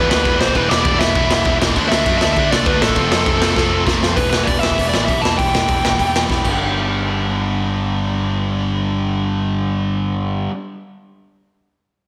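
Rowdy and rebellious, this punk rock excerpt drives along in a straight four as three bright distorted guitars with slapback echo pile up riffs in the background, one of them double-tracked and high-gain, under a dark, smooth overdriven lead guitar whose melody with digital delay runs until 6.2 seconds. A growly, punchy overdriven picked bass holds the low end while a raw garage drum kit sits up front with a boomy kick, dark cymbals and a gritty, saturated small-room pump, landing fills at 3.6 and 6.3 seconds before dropping out at 6.5 seconds. A lush hall reverb gives the whole a big arena sound.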